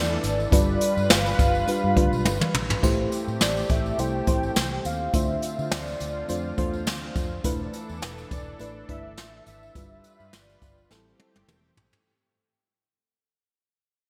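A bright, 1980s-style digital sheen and a moderate, lush hall reverb frame this urgent yet nostalgic pop excerpt in A minor, moving at 104 BPM in 4/4 with a light swing on the sixteenths. A velvety, detuned sawtooth synth lead with a sub octave, vibrato and chorus carries the melody, set over a mellow FM electric piano whose soft, warbling tone decays after each note. Behind them, a thick unison pad, chorused and detuned with a slow attack, holds sustained chords through a progression that cycles from E7sus4 and G7 to Am7 and Dm7. A dark, foam-muted fingered electric bass gives a round, punchy low end, while an up-front jazz brush kit with a boomy kick, dark cymbals and gated reverb enters at 0.2 s, joined by a jingly tambourine sitting in the background. The drums break into fills at 2.3 s and again near the close, as the whole passage fades out from 1.0 s to its end at 12.1 s.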